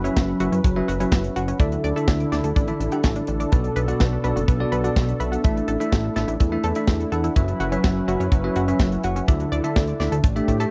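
A straight 4/4 pulse at 125 BPM drives this melodramatic, bittersweet slice of italo disco, cut from a longer piece, with a tight, polished kick drum sitting up front from 0.2 seconds and a dry, airy acoustic funk kit adding hi-hat and a medium-tuned snare touched by studio reverb. Underneath, a fat, thick sawtooth bass with detuned voices and a filter sweep holds the low end, sustained and forward in the mix. A round analog pluck built from sawtooth and square waves with a sub octave spins arpeggios through chorus and tape echo, while a bell-like tine electric piano cuts through with bright, clean stabs carrying subtle chorus and tape echo of its own. Behind them, a smooth, detuned sawtooth pad with a slow attack and chorus holds sustained chords in the background. The harmony circles through F#7sus4, Dsus2, Bm7 and Asus4 before returning to F#7sus4, all captured in a dry, close recording with a 1970s studio character.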